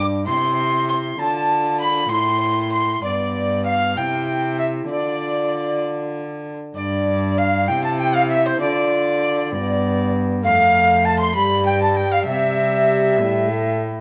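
A straight 6/8 lilt at 65 dotted-quarter beats per minute carries this courtly yet rustic renaissance-style consort dance excerpt, where a pure, woody alto recorder with tongued chiff and vibrato leads the melody above a close, nasal gut-string violin on the second line, a mellow, distant trombone filling the accompaniment and a reedy period-style cello holding the bass, all bathed in a stone room's 1.3-second reverb and the warbling pitch drift of a worn cassette tape as the harmony moves through C, Dm and G before settling back on C.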